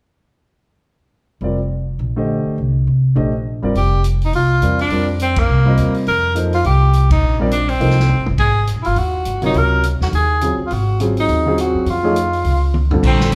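A clear tenor saxophone with vibrato and scooped notes carries a hypnotic, searching modal jazz line from 3.8 seconds, over a woody pizzicato upright bass and a deep-voiced concert grand piano that open together at 1.4 seconds, while a vintage drum kit with dark cymbals and a punchy kick joins the swing with fills, the whole band landing accents as the harmony moves from F9sus4 to Ab9sus4 and on to Faug in a roomy large-studio reverb heard from further back.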